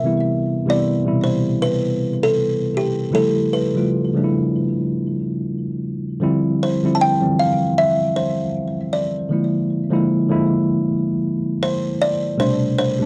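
Hip hop in A minor at 78 BPM with a swung sixteenth feel, this hazy, reflective excerpt pairs a buzzing, woody kalimba melody, bright and thumbnail-plucked, with a worn, slightly out-of-tune tine electric piano that lays down mellow chords from Cmaj7 through A7b13, Dm11 and Bb7#11 to Am11, both parts up front and cassette-tinged throughout the 13.1 seconds under a light reverb that gives the home-recorded sound a lo-fi intimacy.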